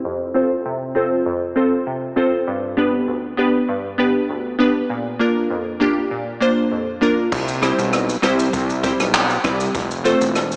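Bathed in a long church reverb and heard as if through a small speaker, this dreamy, sunny dancehall excerpt opens with a glassy, crystalline wavetable pluck carrying the chords alone, pumping against a sidechain with chorus and a low-pass filter sweep. At 7.3 seconds a fat, detuned sawtooth analog bass and a jazz brush kit enter together; the kit sounds distant and roomy, with dark cymbals, a boomy kick, handclaps, hi-hat, rim click, shaker and crash, coated in gritty 12-bit sampler texture. The pluck drops out at 10.2 seconds, leaving bass and drums to finish the bouncy fragment.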